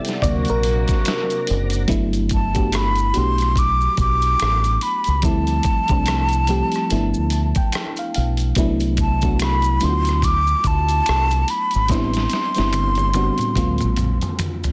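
A breathy, expressive jazz flute carries the melody from 2.3 seconds in this sensual, soulful neo-soul R&B passage, a slow 72 BPM groove in G major with a swung 16th feel and lush chords such as Gmaj9 and Cmaj9#11. Before the flute enters, a warbling vintage FM electric piano plays a short solo over a smooth tonewheel organ with fast rotary speaker and brief, distant horn stabs, and the piano stays on as accompaniment, adding a fill at 6.9 seconds. Underneath, a round, dark fingered electric bass sits up front beside a gritty, dusty sampler-style drum kit with a thumpy kick and softly clipped snare, maracas and finger snaps tick in the background, and the drums close with a fill at 11.9 seconds in a dense, heavily limited mix with light reverb.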